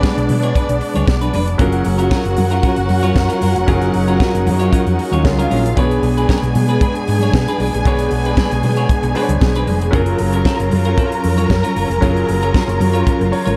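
A straight 4/4 disco groove at 115 BPM in F# major drives this celebratory, joyful excerpt: a tight funk drum kit with a high-tuned snare sits up front beside a round, punchy hollow-body electric bass entering at 0.2 s, alongside very quiet damped congas, a clean, compressed electric guitar with warbly pitch drift, and a clear, intimate baby grand piano in the background that ends on a fill at 13.1 s, while a lush, expressive symphonic string section carries the second line over dark, woody studio strings holding sustained chords, the whole set over a Bm6 to F#maj7 progression in a small room with light reverb.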